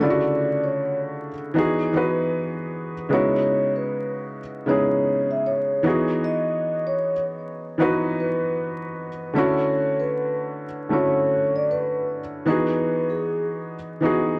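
Lo-fi hip hop at 77 BPM with a swung, nostalgic and dreamy feel, this brief cut from a longer piece shifts from E mixolydian into E major at 3.1 seconds, moving through lush chords such as Dmaj7, C#m11 and Emaj9. A soft-malleted vibraphone carries the metallic, ringing melody through tape echo until 13.4 seconds, while a felt-muted upright piano sits up front with an intimate, mellow accompaniment, its thin felt and audible action noise colored by cassette tape. The whole mix is bathed in a wet studio reverb, with vinyl crackle and the warbly pitch drift of worn old tape.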